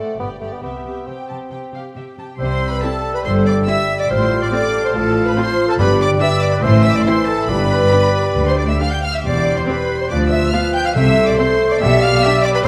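This lively, graceful classical-period movement for symphony orchestra, in C major at 140 BPM and cut from a longer piece, opens with the strings and a solo bassoon. A close, vibrato-rich first violin section sings the high melody over a lush, distant second violin line and background violas, while an intense cello section and smooth double basses hold the bass. At 2.4 seconds an airy, very quiet flute group, a clear oboe with light vibrato and a background clarinet add their lines, a mellow, roomy French horn section sustains chords from 3.2 seconds, and soft-mallet timpani give round accents at 5.8 seconds and again near the end, all set in a concert hall reverb.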